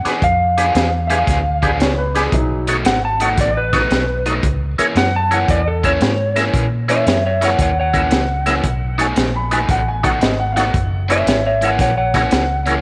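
A dark, slightly broken-up slide guitar played with fingerpicks carries the melody up front over a thick, gritty overdriven tonewheel organ with key click and slow rotary speaker, as a compressed, picked overdriven electric guitar riff, a round, foam-muted vintage bass and a crunchy breakbeat kit with a high-tuned snare and tight kick settle into a swaggering, laid-back electric blues shuffle at 114 BPM over chords moving from Fdim7 through B7 and F#7, while a woody, mellow upright piano adds a second line from 1.1 to 2.8 seconds and again from 9.0 seconds.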